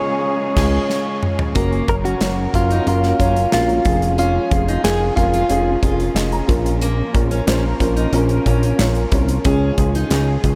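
Uplifting and warm, this piano-driven pop passage, cut from a longer piece, opens with a full band accent. A direct-recorded, compressed clean electric guitar carries the melody with a subtle chorus over a dark, woody upright piano, while a muted, veiled string section holds soft-attack chords in the background. At 0.6 seconds a fat, detuned analog bass with sawtooth and ring-modulated tones and a filter sweep arrives up front alongside a polished, airy drum kit with a tight kick, handclaps and toms, and a very quiet, smooth violin section adds a fleeting second line. A bright, jumbo steel-string acoustic guitar picks a riff in the background from 1.6 seconds. The chords move from Db through Gb and Db/F to Bbm before returning to Db. The electric guitar steps away at 5.8 seconds, when the boxy, slightly detuned piano takes a short fill. A huge ambient reverb soaks the mix in a dreamy haze.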